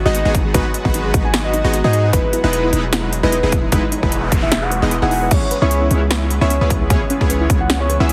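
A very quiet, shimmering ambient pad, a soft round pluck playing arpeggios with chorus, sidechain pumping and dub echo, and a deep, boomy 808-style bass open this lush, bright future bass excerpt at 151 BPM in half-time with swung 16ths in E major, soon joined by a full octave-layered synth lead melody with vibrato, an airy detuned supersaw stab riff with a filter sweep and cassette-tape colour, a big-room dance kit of snare, crisp hi-hats and crash, and a punchy, up-front electronic kick, while the chords move from G#m7 to Emaj7 to C#m7 and a background noise sweep passes between 3.9 and 5.3 seconds, set within a heavily compressed, radio-like digital ambience.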